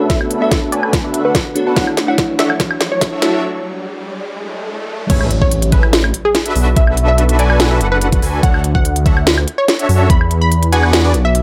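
Future bass with a half-time feel and a euphoric, lush mood, heard as a cut from a longer piece. A punchy, wave-folded unison pluck carries the melody over a fat, nasal polysynth riff with a moving notch, both pumping against the kick, while glassy digital keys with chorus and delay add mellow accompaniment until 3.5 seconds. Behind them, an ethereal, airy pad holds sustained chords in the background, and electronic risers and swells build through the opening, with filter sweeps on the pluck and polysynth and a brief break before the drop. At 5.1 seconds an impact lands, and a thick, dark detuned saw bass enters up front, moving from Amaj9 through Bm7 and Dmaj7 to E9. From the start, an overdriven, knocking electronic kick, which drops out at 10.2 seconds, and a trap kit with a sharp snare, crisp hats, crash cymbal and woodblock sit up front, with a drum fill during the build and light reverb over the mix.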